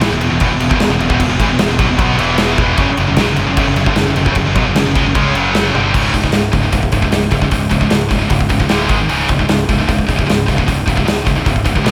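Two bright, picked high-gain electric guitars, one heavy and one scooped, open together on a dark, aggressive heavy metal riff in C# minor at 152 BPM, driven by a growling overdriven picked bass and a big acoustic rock kit with a punchy kick, medium-tuned snare, hi-hat, toms and crash, all set in a moderate scoring-stage reverb for an arena-sized sound, with the power chords moving from E5 and F#5 to C#5 after a drum fill at 5.7 seconds, then briefly through D5 and G#5 before settling back on C#5.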